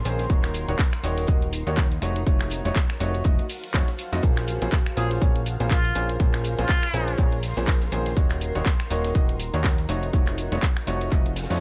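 This soulful, energetic piano house excerpt at 122 BPM in 4/4, with a 57% swing on the sixteenths, opens with a very quiet, dry cocktail kit with a high-tuned snare. It is quickly joined by a layered, tape-flavoured house kit of finger snaps, handclaps and hi-hat, and then by a punchy, up-front electronic kick. A funky, plucky analog bass with a fast attack and a ring-modulated edge sits up front and pumps with the sidechain. So do a brilliant grand piano riff with long sustain and a cloudy, evolving granular pad glowing softly in the background. The harmony in Bb minor cycles through Ebm7, F7b9b13 and Bbm9, giving the groove a rich, jazzy colour. At 5.0 seconds a forceful, vintage trumpet with a plunger mute steps in for a short wah-wah solo with vibrato, trailing a dub echo until 7.3 seconds. Small room ambience frames the whole mix.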